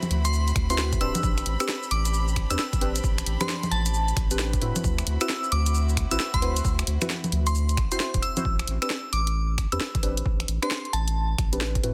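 A dense, heavily limited modern master with a digital ambience frames this late-night, bouncy cut of two-step UK garage, swung on the sixteenths and taken from a longer piece. A thick, saturated sub bass sits up front alongside a gritty, pitched-down electronic kick and an overdriven, layered garage kit of congas, finger snaps, hi-hat, shaker and a cracking snare, both drum parts treated with studio reverb. Over the top, a glassy, crystalline FM bell carries the melody through chorus, phaser and tape echo, while deep, mellow chord stabs with a warbling, detuned, vintage character add dark harmony through chorus and tape echo. An intimate chamber violin section plays soft, bowed sul tasto chords with light vibrato, pumping under sidechain, until it drops out at 8.4 seconds. The harmony moves between D13 and Am11, and the groove shifts into a new section at 8.5 seconds.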